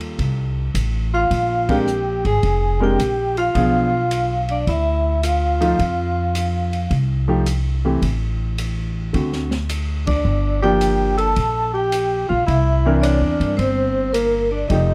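A relaxed swing groove at 108 BPM in 4/4 drives this short cut from a longer small-group jazz piece, its eighth notes lilting with an easy bop-tinged bounce. Piano, upright bass and drums open together, with the acoustic kit sitting low in the mix on hi-hat, kick, ride and snare, its dark cymbals, high-tuned snare and boomy kick giving a small-room feel. The pizzicato bass is up front, woody and growly on steel strings, while the concert grand comps with a clear but worn tone, deep low end and short sustain. At 1.1 seconds the vibraphone takes the melody with medium mallets, metallic and ringing under a fast motor vibrato, joined by a breathy, mellow tenor saxophone on a second line that sounds distant and roomy, with light vibrato and scooped notes. The band hits accents together at 1.6 and 10.0 seconds as the harmony moves from F9 through Bb9, Bdim7, Fadd9 and a brief chordless moment, then on to D7, Gm7 and C9. 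The whole has the dry, close sound of a 1970s studio session.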